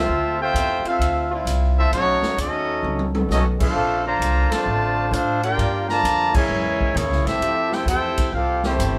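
A mellow trumpet section carries the melody up front in this brassy big band swing passage at 131 BPM in F major. A clear trombone section plays a second line and a softer trombone section holds chords in the background, all with jazz vibrato, while a woody, thumpy pizzicato upright bass sits close. A distant drum kit with a boomy kick and rolled-off top joins at 0.6 seconds and plays a fill at 2.8 seconds, and the full band hits accents as the harmony moves from Dm9 to a closing Fmaj9, all in a wet, small room.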